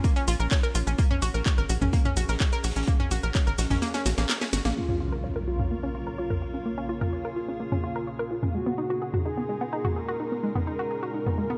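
A straight 4/4 pulse at 127 BPM drives this cinematic, hypnotic melodic techno excerpt in Bb minor, where a punchy up-front electronic kick, a house kit of cracking snare, warm filtered hats, handclaps, shaker and toms, and a very quiet gritty garage kit join a tight, nasal sequencer bass beneath round, bright pumping analog pluck arpeggios and an evolving, morphing wavetable pad with 12-bit sampler grit, until the kick drops out for a drum fill at 3.8 seconds and an electronic impact at 4.8 seconds ushers in a thick, detuned unison lead with vibrato and dub echo, joined at 5.8 seconds by a ring-modulated analog drone as the chords move from Bbm and Gb to Abm7.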